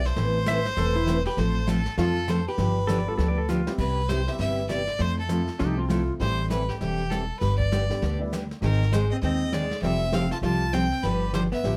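A light reverb gives this short, down-home western swing excerpt in C major an open, easy sound, as it swings along at 199 BPM in 4/4. A clear, focused fiddle with light vibrato carries the melody throughout, over a woody, thumpy upright bass that sits up front and a picked, full-bodied dreadnought acoustic guitar playing the accompaniment. A twangy, clean lap steel adds a second line from 0.5 until 6.1 seconds, while a dark, hollow-body archtop guitar plays its own line at the start and returns at 8.6 seconds. A woody upright piano and a brushed jazz kit with dark cymbals and a boomy kick sit in the background, the drums marking the move into the second section with a short fill around 3.5 seconds. The harmony moves through rich chords such as Amadd9, Cmaj7 and Fmaj7, with a colorful turn to Ab before settling on G7.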